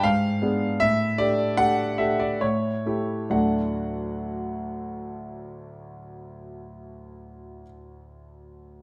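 A classical-period piano sonatina in D major, cheerful and elegant, moving at 66-80 BPM in 3/4 with a flexible rubato feel. The solo grand piano sounds present and up front, with long sustain, spanning D2 to F#5 in a moderate recital hall reverb. The opening slows down over its first 3.3 seconds through G#dim7, A7sus4 and A7 before resolving to D, where the next passage begins, and this short cut from a longer piece ends at 8.8 seconds.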